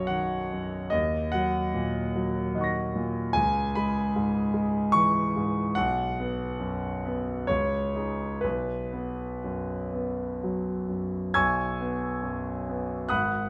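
A clear concert grand piano, up front with deep bass and long natural sustain, plays a serene, dreamy impressionist classical excerpt in B major, drifting in a rubato 3/4 at roughly 59-76 BPM through seventh and suspended harmonies, all bathed in the wet reverb of a stone room.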